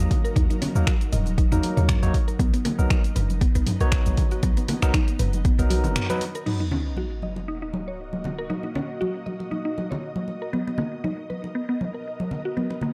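An overdriven electronic kick sits up front in this afro house clip, deep and layered, with a small-room character, beside a matching deep house kit of hi-hat, finger snaps, cabasa, toms and crash cymbal. Damped, thick-skinned congas played with soft hands run throughout under a woody, round mallet-like synth pluck whose arpeggios carry chorus, phaser, tape echo and sidechain pumping. A boomy 808-style bass, a barky, bright tine electric piano throwing echoed stabs, and an ethereal pad of detuned, tremolo-laden chords all breathe with the pumping, moving between Eb minor and Bmaj7. At 6.0 seconds the band hits an accent into a brief break, as the bass, electric piano and drums fall away. From 6.5 seconds an up-front sub drop lands as an impact while a filter sweep moves across the arpeggio, leaving congas, pluck and pad to carry the dark, spiritual mood under light reverb.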